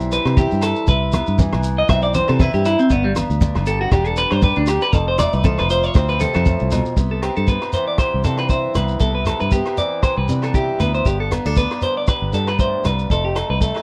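A dark, round fingered electric bass, a boxy picked acoustic archtop guitar and a grainy shekere open this sunny, carefree highlife groove at 118 BPM in C major, joined at once by a twangy, bright clean electric guitar with slapback echo soloing up front until 7.0 seconds over Cmaj7, G and F, while a punchy vintage drum kit on hi-hat, kick and rim click, ringing agogo bells and low-tuned congas that drop out at 6.9 seconds fill out a dry, close 1970s-style sound.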